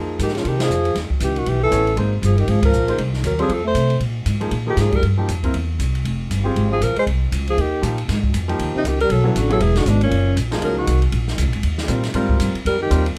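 Light reverb gives this short, smoky jazz cut a small-room feel, with a woody, thumpy upright bass up front beside an alto saxophone that carries the melody with subtone, vibrato and scooped notes. At a brisk 236 BPM swing, a breathy, whispered trombone plays a mellow second line while a concert grand piano with audible action noise comps underneath, and an open drum kit with dark cymbals and a boomy kick keeps time on hi-hat, ride and snare. The band hits accents at 0.6 and 2.6 seconds, and the moody harmony moves into a new section at 8.1 seconds.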